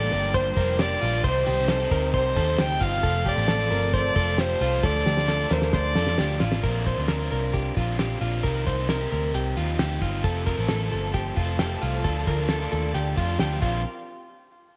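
Jangly indie pop at 133 BPM in Bb major, nostalgic and breezy, where a nasal, boxy fiddle carries the melody with tape echo until 6.4 seconds, over crunchy overdriven guitar, a compressed clean electric guitar's spring-reverbed arpeggios, a round, punchy foam-muted bass up front, a cloth-damped thuddy drum kit with a fat snare and dark cymbals that plays a fill from 4.8 to 6.6 seconds, crisp, very quiet group handclaps, and soft sul tasto string chords that drop out and return at 10.2 seconds, all moving from Gm7 through Cm, F and Dm toward Bbadd9 in this excerpt cut from a longer piece.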